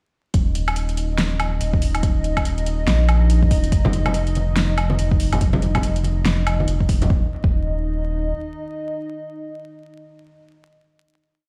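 Deep dubstep at 142 BPM in a half-time 4/4 with swung sixteenths, meditative and heavy, built as a short drop that gives way to a final held pad note at 7.1 seconds. A thick, tube-saturated sub bass plays chopped phrases up front beside a deep electronic kick, while a deep house kit adds a fat snare, metallic hats and a low woodblock, and ringing hand-played congas enter at 3.8 seconds, carrying a dub echo. Over this a moody, detuned analog pad with a slow attack and chorus drones on sustained chords, the mix sounding as if played through a big sound system in a bare stone room, with vinyl crackle.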